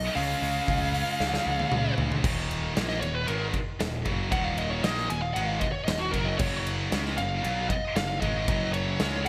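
A dark-toned, high-gain lead guitar sits up front in this heavy, brooding heavy metal excerpt in Eb minor at 115 BPM, its distorted line carried on a digital delay and launching into a solo at 2.2 seconds. The opening passage moves at half time over a Db chord, with a drum fill starting at 1.2 seconds before the harmony settles onto Ebm. Beneath the lead, two bright, picked high-gain rhythm guitars grind out riffs in the background, joined briefly at the start by a double-tracked, compressed distorted guitar that stops as the solo begins. A round, fuzz-laden electric bass with overdrive anchors the low end. The acoustic drum kit is pushed forward, with a boomy kick, a medium-tuned snare, glittering cymbals and toms, all shaped by gated reverb. A lush hall reverb and small-room ambience frame the bright 1980s-style digital production, and the harmony shifts to a Gb5 power chord at 6.4 seconds.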